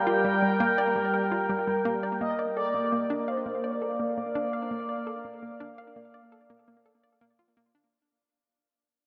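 Soaked in a huge, dreamy reverb, this cosmic, expansive fragment of sequencer-driven ambient space music drifts at 84 BPM over Gm and Bb, with a sweeping, resonant sawtooth pad holding sustained chords up front, a smooth, dark synth lead with vibrato, lush chorus, cassette tape coloring and analog delay carrying the melody until 7.2 s, and a quieter hollow, bouncy square-wave pluck with chorus and analog delay playing a mellow riff, as a fade-out runs from 0.3 s.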